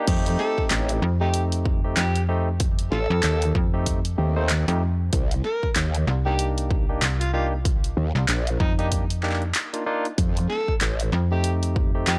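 Gritty and funky, this glitch hop drop at 95 BPM swings its 16ths over F7 and Cm7 chords, driven by an up-front, punchy electronic kick and a layered dubstep kit of deep snare, handclaps, hi-hat and crash cymbal. Two basses sit up front: a growling, wobbling growl bass with distortion and chorus, and a snappy slap-like FM bass with a metallic attack and tube saturation that enters at 1.0 seconds. Barky tine electric piano stabs carry vintage 12-bit sampler grit, sidechain pumping and analog delay, while an amplified, overdriven harmonica solos in a jazz style with tongue slaps and scooped notes, and the dry hardware recording carries little reverb.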